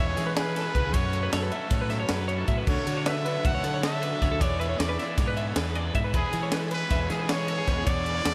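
Math rock and midwest emo in a fast 9/8 at 312 BPM (eighths), this wistful, playful excerpt lays a present, pop-style trumpet melody with slapback echo over bright twelve-string electric guitar arpeggios, twangy and compressed, bathed in lush chorus. A double-tracked, overdriven garage guitar riff sits in the background while a growly fuzz bass pushes underneath, and a crisp fusion kit enters at 0.2 s, up front and gritty, with a high-tuned snare, punchy kick and a pumping small-room sound. The chords move from C#m7/E through F#m7, Dmaj9 and E7 before returning to C#m7/E at 6.1 s, all under a light reverb.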